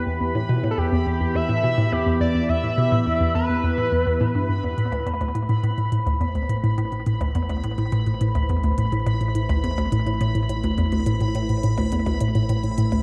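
A hollow, bouncy square-wave pluck sits up front with a detuned, filter-plucked riff in the low register, soaked in chorus and analog delay, while a shimmering, warbling pulse-width lead carries the melody with chorus and vibrato until 4.5 s over a swirling, phased sawtooth pad and a bubbling, resonant texture of random filter steps. This hypnotic, expansive ambient space music moves at 105 BPM in A minor, shifting from Em to Am7 at 4.8 s, where a round, deep analog bass and clicky, overdriven hi-hats and percussion blips fade in from the background. A wet spring reverb and echo-heavy mix give the cut from a longer piece its spacious sheen.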